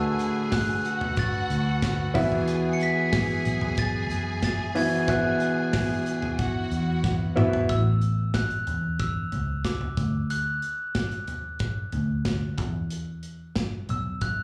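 A ringing, bell-like glockenspiel melody with slapback echo and delay opens this hopeful, anthemic piano-driven pop excerpt at 92 BPM, joined at once by a lush, vibrato-rich violin section, an intimate concert grand with audible action noise and long sustain, and a round, foam-muted electric bass, with a polished, airy drum kit entering at 0.2 s, a drum fill at 7.0 s, and piano and violins dropping out by 7.7 s as the glockenspiel, bass and drums carry on over chords moving from D6 and Esus2 to A, D and E5, all heard as if through a club PA with light reverb.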